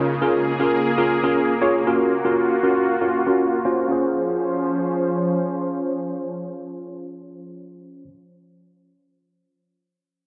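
In a straight 4/4 at 118 BPM, this carefree, summery pop passage in Db major pairs a worn, slightly out-of-tune tine electric piano, chorused, low-pass filtered and heard through a combo amp up front, with a lush, detuned supersaw pad holding slow-attack, long-release chords, set in a moderate plate reverb as a filter sweep runs through the first 3.9 seconds over Bbm7 and Gbmaj7 before the harmony settles on Dbmaj7.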